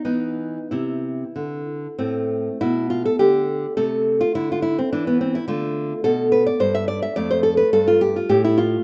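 Flowing and grave, this short excerpt from a baroque-style classical dance in A minor features a solo nylon-string guitar. The guitar is fingerpicked with fresh strings and a warm tone, sits up front and moves in a rubato 3/4 at roughly 90-108 BPM. It opens on a lone E5 before settling through Am, Am/C and Dm to Fadd9 by 7.2 seconds, all within a rough home-demo mix touched by light reverb and studio ambience.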